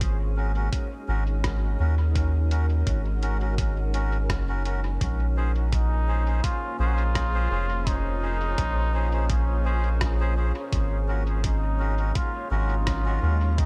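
A gently swung sixteenth-note feel in 4/4 sets the pace for this spacious, meditative slice of ambient dub, cut from a longer piece. A muffled, pitched-down electronic kick drum gives a thumpy, overdriven pulse, joined by a compressed lo-fi sampler-style kit of hi-hat and rim click that trails dub echo through a small room. Up front sits a deep, round sub bass with tube saturation, while a cloudy, detuned granular pad holds sustained chords moving between Ab9sus4 and Bbm7, and a glassy texture of drifting overtones hovers in the background. A reedy, breathy melodica places stabs from 0.4 seconds, each one thrown into dub echo. At 5.7 seconds a muted trombone with a straight mute takes the solo melody, nasal and brilliant with light vibrato, and the whole mix is soaked in heavy digital echo.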